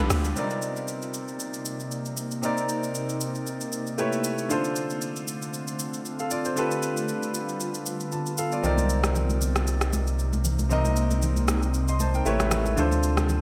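A swung 116 BPM amapiano groove rides on an electronic R&B kit of metallic hi-hats, rim clicks and shaker, recorded in a large room, with bright, thin-skinned congas sitting in the background and the kick dropping out between 7.6 and 8.6 s. Over it, an up-front grand piano plays clear, open chords with long sustain, while an ethereal, detuned pad adds slow-attack, mellow sustained chords colored by chorus and phaser. The deep, hypnotic mood thickens at 8.6 s, when a saturated, up-front sub bass enters and the congas return, all inside a lush hall reverb and a bright 1980s-style digital sheen in this cut from a longer piece.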